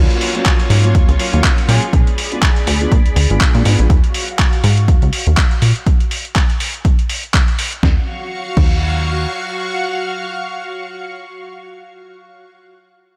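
Lightly reverberant digital ambience and a sweeping filter wrap this groovy, sensual slice of filtered disco house at 122 BPM in Eb minor, with a swung 16th feel and sidechain pumping running through the band. A punchy, up-front electronic kick and a plucky, funky analog bass drive the groove, while a gritty, tape-toned sampler-style kit adds handclaps, hi-hat, a medium-tuned snare and crash cymbal. Lush, vintage string-machine chords hold on until 12.5 seconds over a dark, boxy grand piano with phaser and a clean, direct electric guitar riff that stops at 1.9 seconds, and a tight, clear horn section slips in briefly at 1.7 seconds with a diffuse ambient delay.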